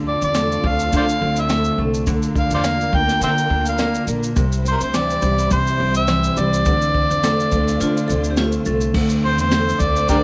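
Vinyl crackle sits over a moderate studio reverb in this short, tender and wistful acoustic pop excerpt, cut from a longer piece in D minor at 105 BPM with a light 16th-note swing. A full-bodied, fingerpicked steel-string dreadnought guitar carries the accompaniment through Dm7, Bb/D, C and back to Dm7. A woody, growly pizzicato upright bass and a jazz kit played with brushes, with its dark cymbals, high-tuned snare, boomy kick and shaker, sit beneath it. Out front, a gritty, amplified harmonica with overdrive and plate reverb takes the melody, punchy and peppered with tongue slaps. A smooth, expressive bowed string section holds sustained chords in the background with vibrato and portamento. A bright, ringing vibraphone played with medium hard mallets adds a brief second line from 7.2 to 8.9 seconds.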